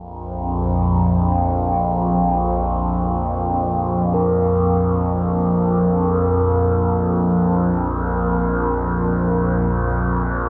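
A resonant drone, built from sawtooth and sine tones, sits up front from the very start. Its low register between Bb1 and F2 is animated by moving overtones, with chorus, its own reverb and a phaser giving it a slow-blooming, long-fading presence. This is a piece of unsettling, cavernous dark ambient in free time, tuned to A4 = 444 Hz and cut from a longer work, with the harmony resting on a Bb5 chord. At 2.7 seconds a very quiet, mellow pad enters, holding deep sustained chords between F3 and F5 in detuned unison with a sub octave. At 4.1 seconds a pure, airy, meditative quartz singing bowl struck with a wooden striker begins ringing arpeggios on Bb4, its slow beating trailed by a diffuse ambient delay. A huge reverb with an 8.3-second tail bathes the dark production, making the space feel immense.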